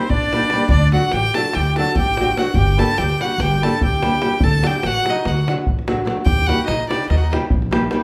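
Balkan folk in the manner of a wedding band, this fiery, bittersweet excerpt drives along at 292 BPM counted in eighths, in 9/8 with a straight feel. A single bowed violin carries the melody up front, its bright, intense tone shaded with vibrato, and it stops at 7.3 seconds. Beneath it a reedy, dark accordion plays a smooth second line over the same span. A small, fingerpicked nylon-string guitar supplies accompaniment, while a woody, thumpy pizzicato upright bass on gut strings holds down the low end and a tight davul keeps the percussion going. The chords move from Eb to D, Gm, back to D and then Eb, and the band sounds as if playing live together in one large studio room with moderate reverb, cut from a longer piece.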